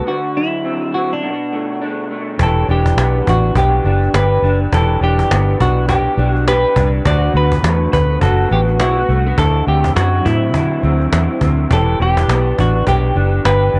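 Indie and bedroom pop in E minor at 103 BPM with a lazy 16th-note swing, this wistful, hazy excerpt opens on a clean, hollow-bodied semi-hollow guitar melody with subtle chorus and tape echo over a slightly broken-up, lo-fi second guitar carrying chorus and vibrato, before a round, foam-muted fingered bass sitting up front and a woody cajon with soft hands and faint snares both join at 2.4 seconds, all captured in a dry, gritty recording with light reverb as the chords move from D9 and Bm7 to Em7.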